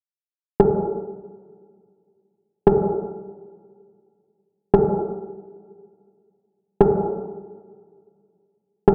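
Sensual and longing, this short R&B fragment moves at a slow 58 BPM in 4/4, with a 58% swing on the sixteenths giving it a lazy sway. An electronic rim click, produced and re-recorded in a large room, sits up front and carries the whole piece from 0.6 seconds to 8.9 seconds. The sound is muffled as if heard through a wall, bathed in a lush hall reverb and club ambience, and darkened by a low-pass filter.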